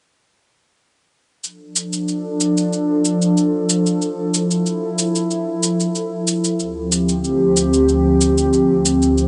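A vast ambient reverb with a long tail and dulled, rolled-off highs wraps this short cut from a longer organic downtempo piece in D minor, moving at 93 BPM in a straight 4/4 with a hypnotic, earthy mood. An up-front electronic shaker with a tape-warm, small-room character begins the drums at 1.4 s. At 1.8 s a warbling, detuned sawtooth pad arrives with slow-attack sustained chords, chorus and its own reverb, holding a nostalgic lo-fi haze over D minor before shifting to Csus4 over D at 6.6 s.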